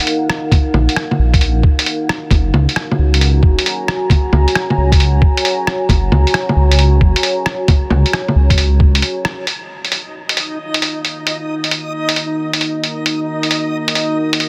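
A melancholic, wistful future garage excerpt in Eb minor moves at 134 BPM in 4/4, its sixteenths swung at 67%. A dark analog pad holds sustained chords from the start, deep and full-bodied with a slow attack, colored by chorus and pumping under sidechain, while a muffled, tape-warm lo-fi sampler-style kit of bongos, hi-hat and rim click sits up front, its snare softly clipped. A compressed, pitched-down electronic kick with a thumpy character joins at 0.5 seconds, and a rumbling detuned saw bass, beating and pumping, enters at 0.7 seconds; the harmony then moves from Ebm to Gb at 2.3 seconds. After a break with a band accent at 9.3 seconds, the chords return to Ebm and a filter sweep runs across the pad while a reversed, dreamy, granular texture, bright and up front with its own reverb, rises in at 10.1 seconds. The mix is dry, dense and heavily limited.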